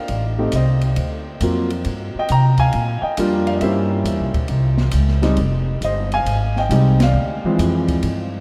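Swinging and late-night in mood, this short jazz piano trio excerpt moves at 136 BPM in 4/4 with a swung eighth-note feel. A grand piano carries the melody, its tone natural and up front, ranging from E3 to Bb5 over changes such as Adim, D7alt, Gm7, C7b9 and Fm9 before settling on Dm7b5. Beneath it, a pizzicato upright bass with steel strings sits close and thumpy, its woody sound reaching down to F1. The acoustic drum kit, lower in the balance, brings hi-hat, ride, snare and kick, with dark, smooth cymbals, a medium-tuned snare and a boomy kick. The whole trio hits a band accent at 6.9 seconds, and a very long cathedral reverb places the group in a vast, echoing space.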